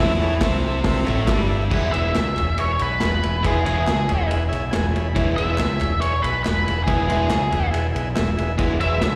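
Garage rock with a rowdy, raw energy, cut from a longer piece and heard as a live gig through the venue's sound system, at a driving straight four-beat pulse. A biting, double-tracked overdriven guitar pounds out the riff up front with a slapback echo. A growling, overdriven picked bass sits just as far forward underneath it, while a buzzy, clean vintage combo organ holds sustained chords further back. At 0.4 seconds a vintage drum kit comes in, gritty and saturated with a punchy kick, dark cymbals and a rolled-off top, alongside crisp group handclaps tucked in the background. From 1.9 seconds a dark octave-fuzz lead guitar carries the melody, its distortion trailed by slapback and digital delay, and the transistor organ breaks in with a short fill at 4.3 seconds.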